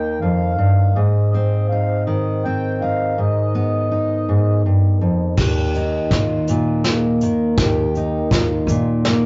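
A dark, full-bodied fingerpicked steel-string guitar with audible finger squeak sits up front and opens this nostalgic, uplifting indie folk excerpt in a slow 6/8 at 54 BPM in Eb major together with a reedy, mellow accordion melody with slow beating that stops at 4.6 seconds, before a woody, thumpy pizzicato upright bass in the background and a roomy brush drum kit with a tight kick enter at 5.4 seconds for a building drum fill, all heard as a rough rehearsal-room recording with warm saturation and moderate reverb.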